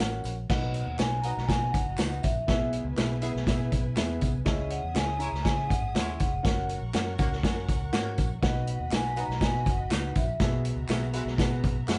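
Uptempo 1960s-style soul in B major at 121 BPM, joyful and uplifting, built on an up-front vintage drum kit with a punchy kick and dark cymbals, a round, foam-muted electric bass, and an intimate grand piano whose action noise is audible. A mellow, ringing vibraphone carries the melody from 0.5 to 10.6 seconds, while a lush bowed violin section with vibrato and portamento and a tight, jazz-style horn section entering at 1.2 seconds sit distant in the background alongside group handclaps, tambourine and shaker. The band plays live in one room with moderate studio reverb and a rolled-off top, moving through B, E/B, C#m and F# in this excerpt cut from a longer piece.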